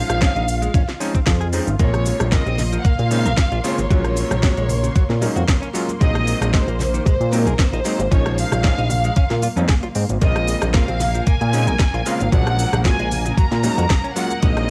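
Nu-disco at 114 BPM with a sleek, cosmic mood, this short cut pairs a smooth, vibrato-rich violin section carrying the melody through cassette tape echo with a clangy electric grand piano, a very quiet detuned unison pad, a fat, nasal analog bass with transformer saturation, a thumpy up-front electronic kick, a house kit of cracking snare and crisp hats, a compressed clean electric guitar riff tucked in the background, and hard-handed maracas, bongos and congas arriving at 1.8 seconds, all over Dbmaj7, Gbmaj7 and Ab7 chords above a held Bb with a lo-fi home-cassette character.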